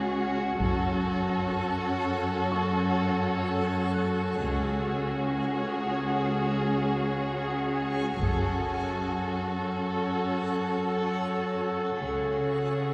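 Cinematic suspense film score in F# minor at a slow 63 BPM, uneasy and tense, with bowed string sections heard from further back in a reverberant concert hall: violins with vibrato carry a focused, close melody over an expressive second violin line, a lush viola section fills the middle, and a rich, smooth cello section sits up front on the bass with a soft-attack double bass section in the background. A bright, dreamy reversed granular texture sustains the chords, while a felt-muted upright piano adds a dark, boxy, very quiet high texture until 8.2 s. Solo taiko drums struck with hard sticks in a live room punctuate the harmony in two short bursts, and a huge, dark cymbal swell is barely audible from 12.0 s as the excerpt closes on a suspended chord.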